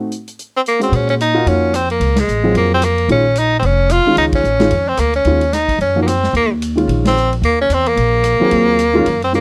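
Spiritual and hypnotic, this short modal jazz excerpt in Bb minor swings at 221 BPM in 4/4, as a dark, mellow baby grand piano opens on Ab7b9 before a forceful, bright tenor saxophone with vibrato takes the melody up front, a growly, woody pizzicato upright bass enters at 0.9 seconds on Bbm9, and a big-band drum kit with punchy kick, ride, hi-hat, rim click and snare swings along as the band hits accents at 2.1, 4.3 and 7.0 seconds through a move to Ebm9, all captured in a dry, close 1970s-style studio sound.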